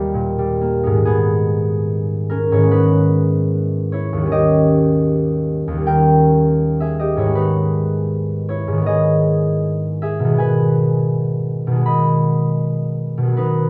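A concert harp plays alone throughout this short classical fragment, its thumb-plucked strings sounding warm and ringing, placed up front in the listener's ear. The mood is gentle and mysterious, set in G# minor and moving in a flexible, rubato 4/4 that drifts between roughly 63 and 83 BPM. The piece opens on a brief D# chord before settling into G# minor at 1.1 seconds, where the main passage unfolds, and the harmony shifts to G# minor over B at 10.4 seconds. The harp spans a broad range, from a deep D#2 up to a bright B5. A moderate recital hall reverb surrounds the instrument, giving each note a natural sense of space as the 13.7-second passage unfolds.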